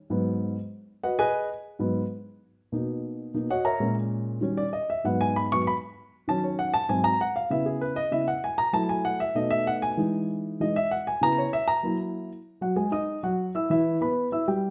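Fiery yet sultry, this fast jazz passage at 194 BPM in B major features a dark, mellow baby grand piano playing alone and up front from 0.1 s, its intimate, short-sustained tone carrying audible action noise and a slapback echo, while moderate large-studio reverb and close, detailed microphones frame a progression that moves from G#m7 through Bmaj9 and Emaj7 before settling onto bare G#5 and E5 harmonies after 12.5 seconds.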